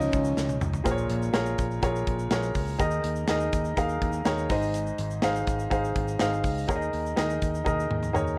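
Piano-driven pop at 124 BPM in 4/4 with a straight feel, this short excerpt from a longer piece carries an uplifting, warm mood. An up-front upright piano, woody and intimate with audible action noise and plate reverb, leads the accompaniment throughout, moving through Dbadd9, Bbm7, Ebsus4 and Ab. A dark, distant French horn section sounds only briefly at the opening, ending at 0.6 s, while a punchy, amped fingered electric bass holds the low end. An airy, polished acoustic drum kit with a tight kick and medium-tuned snare plays drum fills from 0.4 to 0.9 s and again from 7.7 s, with a grainy, saturated tube shaker sitting in the background. The whole recording has the worn, warbling pitch drift of old cassette tape within a moderate studio ambience.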